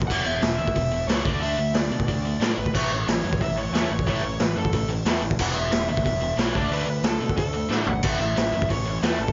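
Rebellious and upbeat, this punk rock excerpt drives ahead in straight 4/4 as a sludgy distorted guitar pounds out the riff over a punchy fuzz bass and an up-front, boomy, gritty garage drum kit, while a lo-fi lead guitar through a small cranked amp carries the melody, a second bright garage guitar joins in the background at 2.7 seconds, and a drum fill at 7.7 seconds leads back to the A chord, all in light reverb with a rolled-off top.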